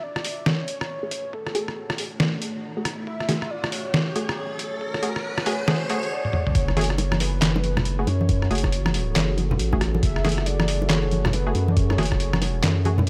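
A breathy, flute-like synth lead with vibrato and dub echo opens this heavy, cavernous deep dubstep piece, soon joined by a gritty, pitched-down trip hop drum kit, a thumpy electronic kick, muted dub chord stabs with a filter pluck, and a moody ambient pad in the background. During the build-up, the stabs and pad are filter-swept and an electronic riser adds tension. After a short drum fill, the drop lands at 6.5 seconds, bringing a thick, saturated sine sub bass up front and ringing, close, dry bongos and congas under soft hands into the swung half-time groove.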